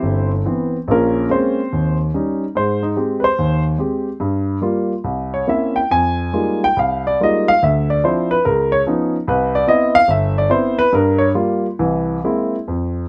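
A single grand piano sits up front and present in a lightly reverberant space, its long sustain letting each chord ring into the next. This brief excerpt of solo jazz feels sophisticated and playful, moving with a swung lilt in four and a rubato feel. The piano carries everything alone from 0.0 to 13.1 seconds, ranging from deep bass notes up into the upper treble. Its harmony is richly colored, passing through chords such as Bbm7, C7b9, Fm11 and Db9 and returning to Cmaj7. The passage closes on a Caug7 at 11.8 seconds, leaving the phrase suspended as if more is to come.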